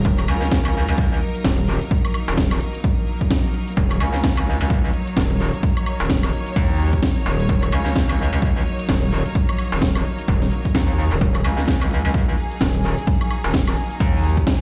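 Gritty and aggressive, this bass house cut, taken from a longer piece, rides a swung sixteenth-note groove over a single minor chord. A metallic, distorted FM wobble bass sits up front with chorus, overdrive and sidechain pumping, beside a punchy, overdriven electronic kick, while a house kit of cracking snare, metallic hi-hats, tambourine and woodblock adds tape-warm texture. Behind them, a clear, biting studio string section holds bowed chords with light vibrato and a smooth top, pumping under a low-pass filter, all heard through a large room's reverb as if played on a big sound system.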